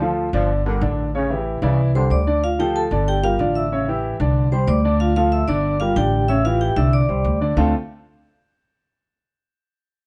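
A bright trombone section with vibrato opens this fiery, driving Latin cut alongside a dark, mellow grand piano and a thumpy, woody pizzicato upright bass on gut strings, and just before the horns drop out at 2.2 seconds a ringing, metallic vibraphone with fast motor vibrato enters at 2.0 seconds to take the melody up front over a cycling Gm, A7, Csus2, Dm progression in light reverb.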